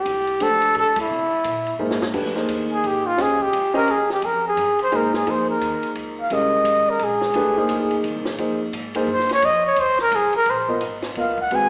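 A breathy, whispered trumpet sits up front and takes a solo from 2.1 s in this cool, intense modal jazz cut in F minor at 173 BPM with a swung 3/4 feel, backed by a deep-bassed concert grand piano, a woody pizzicato upright bass, and a compact cocktail kit with dark cymbals and a high-tuned snare that plays a fill at 1.8 s, heard through a wet church-like hall reverb with a small-speaker sound.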